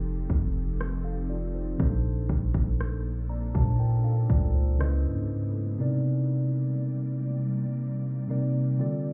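A mellow tine electric piano accompanies this longing, late-night contemporary R&B fragment through F9, Bbmaj9, C#m9 and Cm9 chords, over an ethereal, detuned pad with ensemble chorus, built-in reverb and sidechain pumping, a deep, sine-toned 808-style bass that stops at 5.8 s, and a trap kit of hard-clipped kick and rim click that enters at 0.3 s and stops at 5.0 s, the mix sounding muffled as if heard through a wall, with club reverb.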